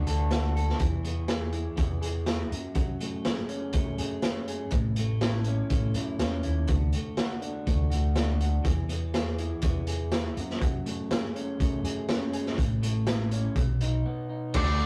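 A rough rehearsal-room recording with warm saturation and light reverb carries this bittersweet, cathartic stretch of quiet-loud alternative rock, cut from a longer piece. A slightly broken-up electric guitar through a small old amp picks compressed arpeggios over a dark, round, overdriven fingered bass, while a raw garage drum kit, up front with a punchy kick, medium-tuned snare and pumping small-room sound, comes in at 0.1 s and drives the chords from D through E, F#madd9 and A. After a short break at 14.1 s, a bright, cranked stack guitar riff with spring reverb and a dark octave-fuzz lead on a single high note crash in at 14.6 s just as the excerpt ends.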